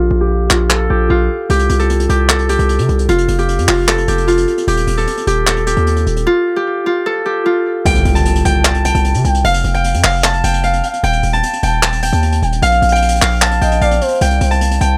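A bright, ringing fingerpicked Celtic harp carries the melody through a filter sweep and delay in this eerie, brooding half-time trap excerpt at 151 BPM in C dorian, over a punchy, heavy 808-style bass up front, a small-room brush kit with a rolled-off top, handclaps and hi-hat, a background electronic impact at 7.9 s, and a smooth, gliding portamento lead with chorus and vibrato that enters at 8.5 s.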